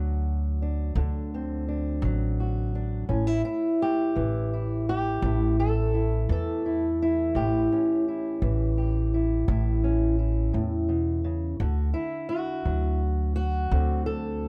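A slow, swaggering 12/8 pulse at 56 BPM carries this soulful acoustic country blues excerpt in A mixolydian, where an up-front, boxy fingerpicked ladder-braced guitar with old strings plays the melody over a woody pizzicato upright bass, moving from D7 to A7 at 3.1 seconds and back to D7 at 11.6 seconds in a dark production with a moderate booth ambience.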